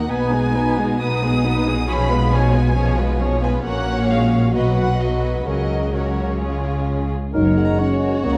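A straight 4/4 pulse at 134 BPM drives this quick, cheerful and graceful classical-period movement for symphony orchestra in F# major, cut from a longer piece. A dark, woody violin section carries the melody over a focused second violin line, lush viola accompaniment, and a smooth, rich cello and double bass foundation, all bowed with vibrato. At 7.3 s, as the harmony settles on F#, a mellow cor anglais adds a second line, a shadowy bassoon joins the accompaniment, and an up-front, soft-attacked French horn section enters with sustained chords, all in a wet recital-hall reverb and a dark, warm production.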